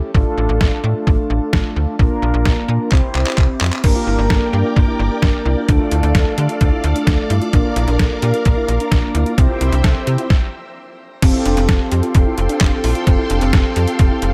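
Nostalgic and bright, this synth-pop excerpt opens with mellow, brassy synth brass bathed in chorus and shimmer reverb over a snappy, metallic slap-like FM bass and a detuned 8-bit drum machine with thumpy kick, snare, hi-hat, handclaps and crash, the bass and drums sitting up front. A drum fill at 2.9 seconds leads into the entry at 3.8 seconds of a warbling, vintage string machine holding sustained viola chords, along with a soft, round pluck playing arpeggios in the background with tape echo. A stop at 10.3 seconds sets up the closing passage, which settles onto an Fadd9 chord.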